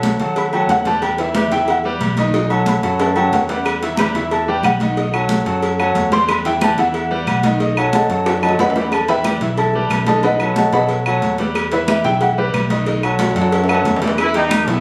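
Fiery and driving, this salsa excerpt races along at 182 BPM in E harmonic minor, its harmony swinging between B7 and Em. A felt-muted upright piano carries the melody from 0.4 seconds, its soft, mellow, intimate tone dark and thick with felt, the action noise audible and a slapback echo trailing each phrase. Beneath it, a brilliant, open baby grand piano plays accompaniment up front with long sustain, while a round, punchy fingered electric bass anchors the low end. The percussion is dense: high-tuned congas with a damped, thick skin, tight and saturated cowbell and bongos played with soft hands, ringing metal-shell agogo bells and timbales, and woody claves joining in the background at 3.7 seconds. Drum fills punctuate the groove, and at 14.2 seconds a bright, tight trombone section with light vibrato and a smooth top enters just as the clip ends. The whole track was captured on a phone in a moderately ambient studio.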